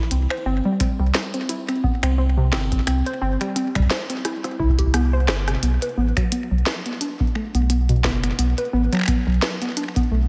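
A warbling, lo-fi pluck spins intricate arpeggios through chorus and delay over a round sine sub bass and a glitchy kit of finger snaps, clicky hats, rim clicks and a tiny snare, with a deep analog kick joining at 0.8 s, in this melancholic, reverb-soaked IDM excerpt at 87 BPM in swung 4/4, where a drum fill from 4.3 s leads into a second section at 5.6 s.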